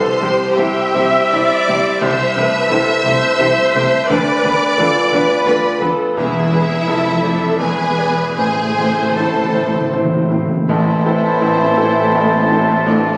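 Captured on a phone in the room, this recording has a compressed character, with a wet hall reverb layered over a club-like ambience. It is a tragic, passionate romantic movement for piano and orchestra, cut from a longer piece and moving in a flexible three-beat rubato. A clear baby grand sits up front, its action noise audible and its notes ringing with long sustain, sharing the melody with a bright, intense symphonic violin section that soars high above. Around them, a second violin line, expressive violas sliding with portamento, and cellos and double basses in the background fill out a lush, vibrato-rich string body, while the harmony darkens from C through a diminished chord to E and E7 before settling on A minor. Timpani played with hard mallets enter at 6.2 seconds and add an articulate fill from 8.4 seconds. At 10.7 seconds a new section opens with an airy, distant flute, a roomy cor anglais and a dark bassoon, under very quiet sustained chords from mellow French horns and a bright trombone section.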